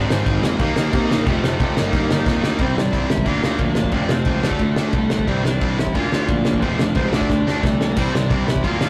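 Energetic, upbeat punk rock at 179 BPM in a straight 4/4, this short rough rehearsal-room excerpt stacks three overdriven riff guitars, one bright, one warm and one raw and double-tracked, over a growly picked bass and an up-front loose drum kit with a fat snare, punchy kick and dark cymbals that breaks into fills at 2.3 and 7.3 seconds, while a smooth, dark lead guitar carries the melody through chords like Ab, Eb, F and C in a small, moderately reverberant room.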